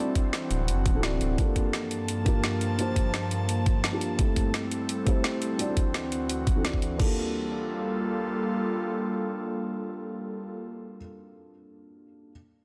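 A dense, heavily limited modern master sets this excerpt of liquid drum and bass inside a moderate scoring-stage reverb with a digital ambience. The mood is lush and melancholic, moving at 171 BPM in a straight 4/4 in G dorian, over chords that run D9, Gm9, Am7, D9 and back to Gm9. A breathy, airy pad with a detuned sawtooth and triangle blend, a noise layer and chorus sits up front, holding long sustained chords with a slow attack, while a soft, boxy felt-muted upright piano plays dark, intimate accompaniment through a low-pass filter and dub echo, its filter sweeping through the first 7.0 seconds. The drums arrive at 0.2 seconds: a knocking, overdriven electronic kick placed up front, and a layered kit with a woody snare, bright hi-hats and crash cymbal, both treated with overdrive and studio reverb. A round, sine-like sub bass with tube saturation appears only briefly, from 0.5 to 1.4 seconds, deep and sustained under the opening chords. 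The beat drops out at 7.1 seconds as the second section begins, leaving the pad and piano to carry the harmony until they stop, the pad at 10.6 seconds and the piano at 12.3 seconds.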